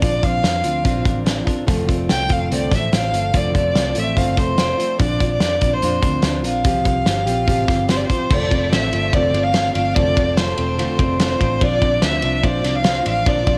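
This jangly indie pop piece opens with every part playing at once, a bowed solo violin carrying the melody over fingerpicked acoustic guitar, bright twelve-string electric guitar, bass and drums, at a bright, youthful 145 BPM in a straight 4/4 in F major. The violin sits up front yet sounds distant, its tone smooth and even with steady vibrato, and it shares a cassette-tape colouring with the drums. Beneath it, the plugged-in steel-string acoustic is full-bodied with fresh strings, while the twangy, compressed twelve-string spins clean arpeggios in the background. The vintage electric bass is foam-muted, round and punchy, and the loose kit is fat in the snare and tight in the kick, with dark cymbals in a small room. The harmony moves through Bbadd9, F6 and Csus4, shifting into a new section at 8.3 s on F6 before returning to Bbadd9. Light reverb and studio ambience give the whole a homespun feel in this passage cut from a longer piece.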